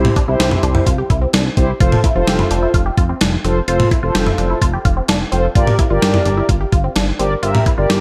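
An up-front gated 80s digital drum machine, with a thumpy kick and gated-reverb snare over hi-hat and toms, drives this nostalgic, upbeat synth-pop excerpt, joined throughout by a dark, glossy chorused synth bass, mellow brassy synth brass with chorus and vibrato, and a squelchy, resonant blip pluck whose arpeggios run through phaser and digital delay as the chords move from Cadd9 to F at 1.8 seconds and Gm7 at 5.6 seconds.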